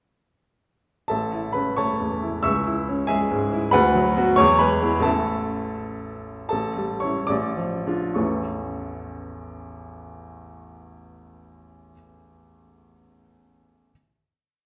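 A clear, intimate baby grand piano, its action noise audible, rings out in a reverberant recital hall heard from further back in the room. This brief, complete classical virtuoso study in 6/8 has a brilliant, heroic mood, with rippling figuration beneath a tune in filled octaves, all played with free rubato. The solo piano broadens from 4.4 seconds through a short coda and settles on a final chord held from 8.2 seconds.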